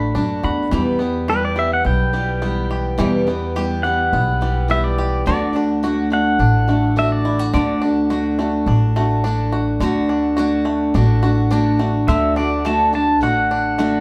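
Heard from further back in a small, reverberant room, this short passage from a longer acoustic folk piece has a nostalgic yet hopeful mood, moving at a straight, unhurried 106 BPM in 4/4 and D major. A clean electric pedal steel guitar carries the melody up front, its fingerpicked, compressed slide lines and volume swells glowing in a plate reverb as it solos until it falls away at 7.8 seconds, then returns at 12.1 seconds. Underneath, a picked steel-string acoustic guitar with old strings and a woody, auditorium-sized tone holds down the accompaniment. A twangy, percussive bluegrass banjo adds bright fingerpicked arpeggios a little further back. A thumpy, dark pizzicato upright bass on steel strings anchors the low end, while the harmony moves gently from D to E minor and back to D.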